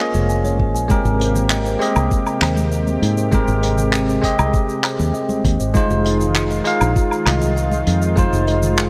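Sunset chillout in Ab major at 99 BPM, this short excerpt cut from a longer piece has a sunny, smooth mood over a straight 4/4 pulse. A bright, bell-like tine electric piano sits up front carrying the accompaniment, shaped by a low-pass filter and delay, with a filter sweep running across its full 8.9 seconds. Beneath it, a lush unison pad of detuned sawtooth and square waves holds thick, slow-blooming chords treated with chorus, while a woody, hollow-toned kalimba plays soft, ringing arpeggios with delay further back in the mix. A punchy, foam-muted fingered electric bass anchors the low end up front. The rhythm comes from a vintage brush kit with a rolled-off top, adding handclaps, hi-hat, shaker and woodblock, joined by very quiet, close and dry congas and a knocking electronic kick that enters at 0.6 seconds. The harmony moves from Bbm9 to Abmaj9 and settles on Fm7 at 5.7 seconds, all wrapped in light reverb and small room ambience.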